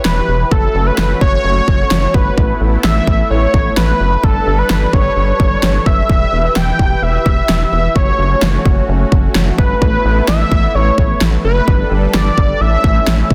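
Densely limited and lightly reverberant, this nocturnal, driving synth-pop excerpt at 129 BPM sets a punchy, up-front electronic drum kit with a fat snare and a rubbery, hollow square bass under a thick, bold sawtooth unison lead with vibrato and a lush, detuned chorus-washed pad sustaining chords that cycle from Em through F#m, Asus2 and Gadd9 before landing on A at 12.6 seconds.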